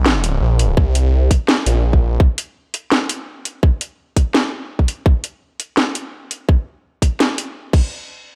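This short cut from a longer half-time drum and bass piece opens on a phased, detuned saw bass, thick and swirling, with a fast attack and saturated sustain sitting low between Bb1 and C2 before it stops at 2.2 seconds. At 168 BPM in 4/4, the half-time feel gives the music a spacious, cinematic mood. The drum kit comes in at 0.1 seconds with a cracking snare, metallic hats and crash cymbal, layered and produced, with a re-recorded small-room character. An electronic kick joins at 0.8 seconds, tight and up front, the loudest part of the mix. The drums carry on together to the end of the single section, and the sound stays dry and close throughout.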